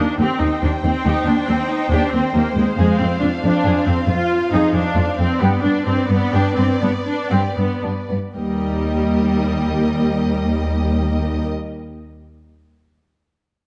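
A cinematic string passage, cut from a longer piece, with an adventurous, heroic mood in 12/8. A violin section carries the high melody with a soft attack, vibrato and a smooth top, while a second violin section plays an expressive supporting line that sits distant in the mix. The viola section is clear and intense, placed up front with light vibrato, and the cellos hold the bass with a lush, rich tone, soft attack and portamento. The harmony moves from Cm/Eb through Fm to G, and the pulse slows between 3.6 and 8.4 seconds before arriving on Eb at 8.4 seconds. The scoring-stage reverb is moderate, and the production is dark and warm.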